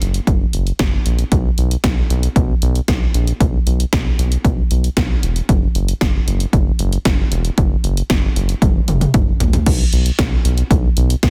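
A dry, dense and heavily limited master carries this wistful yet upbeat synth-pop fragment in straight 4/4, where a round, dark analog bass that blends sawtooth and sine tones with ring modulation sits up front in a deep register beside a punchy analog drum machine, re-recorded in a small room, whose kick, snare, hi-hat, toms and crash play until a drum fill at 8.6 s leads into a new section at 9.7 s.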